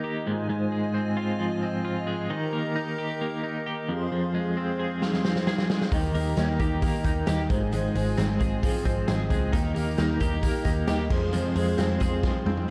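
A hollow, flute-like pad with chorus and a bright, twangy twelve-string electric guitar, picked in arpeggios through tremolo, open this bittersweet, wistful stretch of jangly indie pop at 133 BPM, cycling through Ab6, Eb and Fm. A raw garage drum kit enters with a fill at 5.0 seconds, bringing a punchy kick and a stone-room snare up front, and at 5.9 seconds a shimmering, octave-doubled fingerpicked twelve-string acoustic guitar and a round, foam-muted electric bass join the band. The production is dark and warm, with light reverb, and the clip closes on another drum fill.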